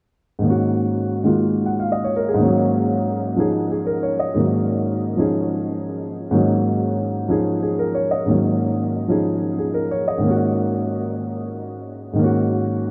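A vast, echoing space surrounds this short jazz recording, its huge reverb trailing about 7.9 seconds behind every sound. Within that cavernous wash, a grand piano sits up front with a natural, warm tone and short sustain, playing accompaniment from 0.4 to 12.9 seconds across a span from G#2 to F#5. The tune moves at 123 BPM in 4/4 with a swung eighth-note feel, and the harmony rests on a single G#9sus4 chord. The mood is cool yet intense, the suspended chord hovering unresolved inside the long reflections. It is cut from a longer piece, so it feels like a passing glimpse of a larger performance.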